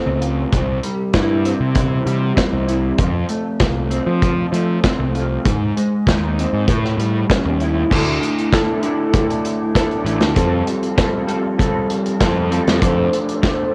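A slightly broken-up electric guitar through a small old amp plays the riff up front in this jangly, upbeat indie rock excerpt at 98 BPM in straight 4/4, its lo-fi, compressed tone colored by ensemble chorus and cassette tape. A round, overdriven fuzz bass, picked and heard both direct and amped, underpins it, while a loose acoustic drum kit with a punchy kick, medium-tuned snare, dark cymbals and a pumping room sound keeps time through its own cassette tape coloring. Recorded at home on cassette with little reverb, the music moves through F, C, Ab and A7 before shifting at 7.9 s to a second section built on Dsus2, Fadd9 and Dm7/F.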